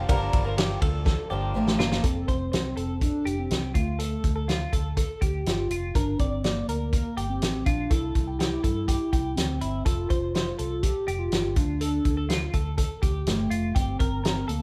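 Set in a light reverb, this nostalgic, bright slice of jangly indie pop at 123 BPM in F major opens with a shimmering fingerpicked twelve-string acoustic guitar that plays only until 2.0 seconds, while a loose, up-front drum kit with a fat snare and dark cymbals plays a fill from 1.1 seconds; throughout, a twangy twelve-string electric guitar plays arpeggios through harmonic tremolo, a round, foam-muted vintage bass anchors the low end, and a hollow, woody clarinet-like synth lead with chorus carries the melody over chords moving from Fadd9 through Dm, Gm and C.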